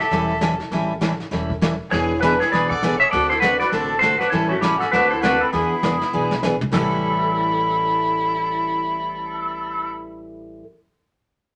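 A swinging 200 BPM groove in 4/4 drives this playful western swing country excerpt in A mixolydian, where a bright, twangy lap steel carries the melody up front over a clear fiddle second line, a full-bodied picked acoustic guitar, a thumpy pizzicato upright bass and a dark, smooth brush kit that plays a fill at 6.1 seconds before dropping out at 6.8 seconds as the A7, E7 and D7 changes turn back to A7.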